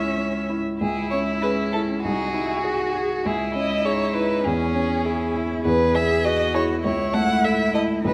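In 2/4 with a supple, rubato pulse, this short passage from a classical-period movement for piano quartet feels graceful and spirited. One violin carries the melody up front, its focused tone shaded with vibrato and polished at the top. A second violin and a cello weave supporting lines beneath it: the violin is smooth and even, and the cello is full-bodied, with soft attacks, expressive portamento and its own vibrato. The baby grand piano supplies the accompaniment, reaching low into the bass with a dark, mellow, vintage character and short sustain, and it sits close alongside the lead violin. The four players sound together from the opening to about 8.1 seconds, wrapped in a moderate recital hall reverb.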